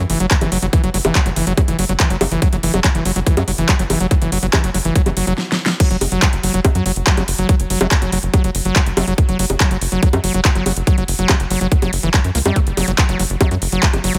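Psychedelic trance at 142 BPM with a hypnotic, psychedelic pull: a squelchy, distorted acid bass riff with resonant filter plucks, sidechain pumping and delay sits up front over a punchy sawtooth-and-square sequencer bass, while an overdriven electronic kick punches up front and a big-room kit of huge snare, metallic hats, handclaps, bongos and crash fires a drum fill at 5.4 seconds into the drop at 5.8 seconds, all in a digital ambience.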